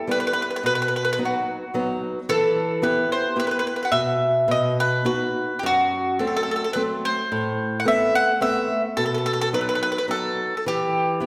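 Passionate and wistful, this brief passage from a longer Italian folk serenade moves in a flexible, rubato three-time that lets each phrase breathe. A warm, woody mandolin carries the melody up front, its picked double strings ringing out in a clear upper register. Just behind its first note, a small, bright nylon-string guitar enters with fingerpicked accompaniment, spanning from low bass notes up into the middle range and sitting slightly beneath the mandolin. The harmony circles around E minor with a touch of darkness, passing through a diminished chord and a colorful added-ninth chord before settling home at 10.6 seconds. Both instruments are bathed in a lush, lingering reverb that suggests the resonance of a church or concert hall.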